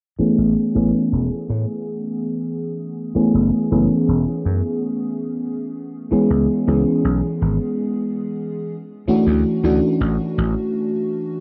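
Faded and woozy, this short vaporwave fragment, cut from a longer piece, drifts at 81 BPM in a straight 4/4 in A major, tuned slightly sharp. An FM electric piano with a soft pad layer carries the accompaniment from 0.2 to 11.4 seconds, its lush, dreamy tone touched by a noise layer, a fast attack and decaying notes, with subtle chorus and analog delay adding to its dark, full-bodied character. Beneath it, a vintage slap bass sits up front with a growly, punchy, amped edge, playing from 0.2 seconds and dropping out at 10.5 seconds. The harmony moves through Amaj9, F#m11, C#m7 and Dmaj9, giving the passage a hazy, unresolved drift. A huge ambient reverb with a long 4.4-second tail, a low-pass filter and a filter sweep across the whole passage blur the mix into a muffled, nostalgic haze.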